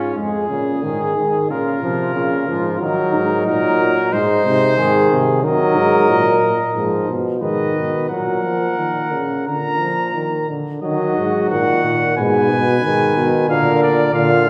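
A close-miked, warm cornet carries the melody up front from the opening moment, joined at once by a mellow flugelhorn second line and a dark, vibrato-tinged euphonium bass, with a trombone adding accompaniment from 0.2 s with light vibrato, in this serious, contemplative classical canzona for brass ensemble at 91 BPM in 4/4, which settles into Eb minor from 5.4 s and unfolds in imitative lines within the resonant wash of a church or concert hall.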